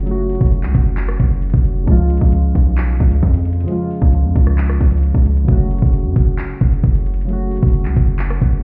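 A knocking trap drum kit sits up front, its electronic kick, metallic hi-hats, handclaps and rim clicks driving a brooding hip hop groove at 133 BPM in a half-time 4/4 feel. Alongside it, a punchy 808-style bass hits hard up front, its heavy sine tone layered with noise and decaying after each fast attack. Soft electric-piano-like synth keys supply the accompaniment, their round, mellow tone built from detuned triangle and sine waves with wave-folding, a filter sweep and a gentle chorus. The harmony in F# harmonic minor moves from F#m to C# at 1.9 seconds and back to F#m at 5.5 seconds. The whole piece is a short cut from a longer track, and it sounds muffled, as if heard through a wall, with the faint tone of a stone room.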